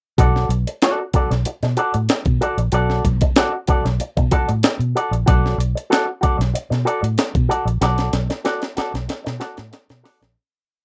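At 0.2 seconds a cool, funky groove in B minor at 94 BPM starts on a Bm7 chord: a gritty, pitched-up breakbeat sampler-style drum kit with a thumpy kick and ghost-noted syncopated pattern, a dark, round, foam-muted vintage fingered bass riff anchored on the downbeat with chromatic approach notes, and a bright, twangy electric guitar through an envelope filter and subtle chorus scratching out sixteenth-note rhythm. All three sit up front in a dry, rough home-demo mix. A drum fill arrives at 7.8 seconds as the short piece fades out.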